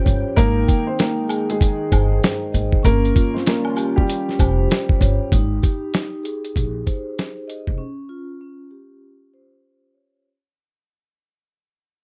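A dry recording with a tape-warm grit carries this soulful boom-bap hip-hop excerpt in Ab major, moving at 97 BPM in 4/4 with a 62% 16th-note swing. Up front, a compressed sampler-style drum kit lays down a thumpy kick, a medium-tuned snare and hi-hat, joined by a woody pizzicato upright bass on gut strings and, in the background, a tube shaker and woodblock with group handclaps. A dark, worn upright piano carries the melody from 0.4 to 4.7 seconds, slightly detuned and intimate, its action noise audible and its notes trailing through delay. Soft-mallet vibraphone adds mellow, ringing accompaniment with a slow motor vibrato and a cassette-tape tint, while a moody sawtooth analog pad with chorus and a sub octave sits low in the mix until 5.3 seconds. The harmony moves from Abmaj7 to Eb13/G, and from 5.3 seconds the piece begins fading out; the drums and bass stop at 7.8 seconds, leaving the vibraphone alone over a closing Dbmaj7#11.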